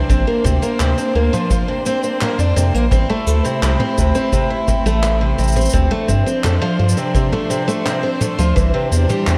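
A straight 4/4 pulse at 85 BPM anchors this delicate, autumnal folktronica fragment in D minor, where a distant, punchy kick and a small-room brush kit with handclaps, shaker and toms keep the groove beneath a round, dark analog bass sitting up front. A picked twelve-string acoustic guitar with fresh, shimmering, octave-doubled strings runs arpeggios through tape echo, while a close, bowed string quartet holds smooth chords with vibrato, moving through Bbadd9, Am, Dm7 and Cadd9. Plate reverb soaks the dreamy mix, and the clip is cut from a longer piece, ending at 9.4 seconds.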